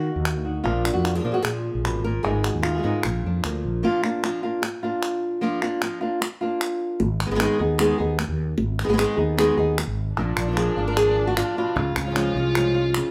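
Flamenco at 151 BPM in a straight 4/4, intense and dramatic, set in Bb phrygian dominant with chords moving through Ebm, Bb, Abm and Db in this short cut from a longer piece. A bright, up-front flamenco guitar carries the melody throughout, fingerpicked on fresh strings with audible finger squeak. Crisp, close palmas hand claps keep the pulse from 0.3 seconds, while a round, dark fretless electric bass sits up front, dropping out between 3.8 and 7.0 seconds before returning. A second, warmer flamenco guitar adds fingerpicked stabs in the opening and closing stretches. At 10.2 seconds a distant solo violin enters with a bowed, expressive second line, its soft attack, vibrato and portamento adding a shadowed edge as the band plays together in one room with light reverb.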